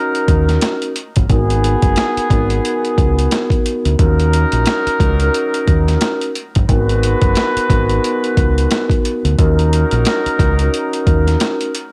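A swung boom-bap groove at 89 BPM in 4/4 drives this dark, tough hip hop piece in G# minor, with gritty, overdriven sampler-style drums up front, built on a thumpy kick, medium-tuned snare and hi-hat, beside a round, deep fingered electric bass with transformer saturation. A mellow soft-mallet vibraphone rings through the D#m7 and G#m7 changes with a cassette-tape tint, while a veiled, cup-muted trumpet section adds soft stabs with light vibrato and tape echo. The home-cassette sound sits in a digital ambience, cut from a longer piece.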